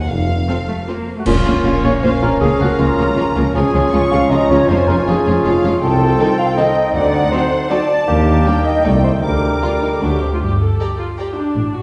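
This cinematic film cue has a playful, whimsical character, magical and mischievous, moving in a lilting three-beat metre as a fragment cut from a longer piece. A lush symphonic violin section carries the melody from the outset, its smooth, even bowing warmed by vibrato. Beneath it, chamber cellos with soft attacks and portamento join distant double basses and a very quiet, clear tuba to form the bass, while a second, studio violin section and a chamber viola section sit in the background with rich, even tone. A dark solo cor anglais enters on a second line at 1.2 seconds, and at 1.3 seconds the rest of the woodwinds and the horns arrive together on a band accent: a close-miked clarinet and an airy, mellow flute group with crisp attacks take up further second lines, a solo bassoon adds accompaniment, and a very quiet, roomy French horn section holds sustained chords, as clash cymbals and concert bass drum strike a brief, dry accent. 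The harmony shifts from minor chords into more colourful diminished, dominant and major-seventh sonorities before settling on a bare open chord near the close. A wet scoring-stage reverb places the ensemble further back in the room, with a soft, rolled-off top end.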